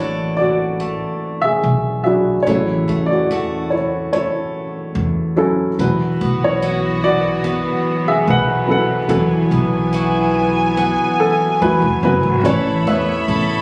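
Captured on a phone in a club room with little reverb, this hopeful, heartfelt acoustic folk-pop ballad excerpt in A major at 72 BPM sets a dark, mellow upright piano melody with audible action noise up front over full-bodied picked arpeggios on a jumbo steel-string guitar and a woody, thumpy pizzicato upright bass, joined at 5.8 s by a chamber string section with soft-attack sul tasto chords and light vibrato.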